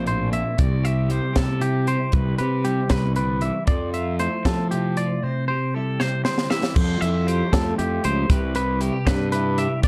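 Math rock with a Midwest emo lean, this playful, intricate excerpt moves at 78 BPM in a straight 6/8, counted in dotted quarters and centred on C major. A bright, twangy twelve-string electric guitar with subtle chorus carries the accompaniment, while a clean, twangy electric guitar spins fingered arpeggios in a higher register above it. Underneath, a fuzz-drenched fingered bass sits up front, its overdrive giving it a growly, punchy edge. A crisp fusion drum kit enters at 0.1 seconds, with a high-tuned snare, punchy kick, hi-hat and crash ringing in an airy, polished studio room. The harmony drifts through colourful chords such as Bbsus2, Cmaj7, Fmaj7 and C6, and a drum fill from 6.0 seconds ushers in a new section at 6.8 seconds that opens on Fmaj9 before settling back to Cmaj7. Light reverb and a dark production tone round out the sound.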